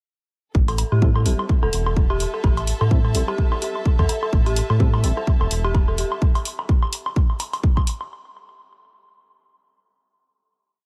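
A punchy four-on-the-floor kick drives this cool, sparse minimal techno piece at 127 BPM in 4/4, with a 57% swing on the 16ths, programmed hi-hats with a backbeat, and woodblock clicks and blips in cross rhythm, all sitting over a round, deep analog bass riff that is syncopated and pumps against the kick. Around the Am7 harmony in A minor, an eerie, inharmonic detuned synth bell loops a 10-step sequence that drifts against the bar through chorus, delay and a low-pass filter. Hollow organ stabs echo sparsely in the background from 1.0 to 5.1 seconds, while a lush bowed string section fades in with slowly shifting chords, all in a light reverb until the groove ends at 8.1 seconds.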